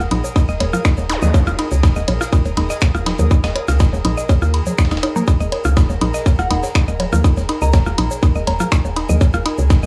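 Quirky and hypnotic, this minimal techno cut from a longer piece moves at 122 BPM in a straight 4/4 over a held Ebsus4, driven by an overdriven, up-front electronic kick and a dark, round FM bass that pumps with sidechain, all captured with a dry, gritty small-room feel. A chorused, mallet-like synth pluck riff with tape echo and a woody tone sits above congas, woodblock and bongos, a grainy egg shaker, and an overdriven garage kit of finger snaps and hi-hat. Further back lie a filtered breakbeat kit with ride and a high-tuned snare, a breathy pad, a faint pulsing gated texture, a brief zap at 1.1 s, and a mellow, phased synth bell that enters at 6.4 s.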